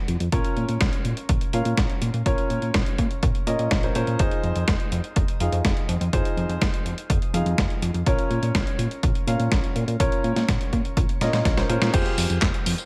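A straight 4/4 pulse carries this bittersweet, nostalgic italo disco passage, cut from a longer piece. Up front, an overdriven electronic kick gives a punchy analog thump, while a gritty, compressed sampler-style kit adds a medium-tuned snare, hi-hat, handclaps, tambourine and crash cymbal, all soaked in gated reverb. Beneath them, a fat, detuned analog bass blends sawtooth and square-wave tones, with a fast attack, sustained mellow notes, a filter sweep and a moving notch. Warm baby grand piano stabs with a natural, short sustain ring through shimmer reverb and delay as the harmony moves from Bbm to Fm7 and back, landing on Fmadd9. A drum fill at 11.2 seconds sets up a band accent at 11.8 seconds, and light digital ambience frames the whole mix.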